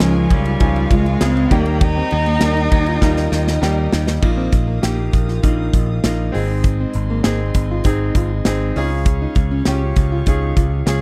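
A dry, close 1970s-style studio sound with a small room reverb frames this uplifting, anthemic piano-driven pop excerpt at 99 BPM in Eb mixolydian, tuned to A4 = 435 Hz. A bright, brilliant concert grand with deep bass and short sustain carries the accompaniment over an up-front drum kit with a punchy kick and a medium-tuned snare, a growly picked electric bass, and a full-bodied fingerpicked steel-string acoustic guitar riff in the background, while a dark, floating string section holds sul tasto chords throughout. A rich, focused bowed cello sings the melody with vibrato until 3.6 s, joined by a lush violin section playing a second line with portamento, and a drum fill from 3.0 s leads into the second section at 4.2 s.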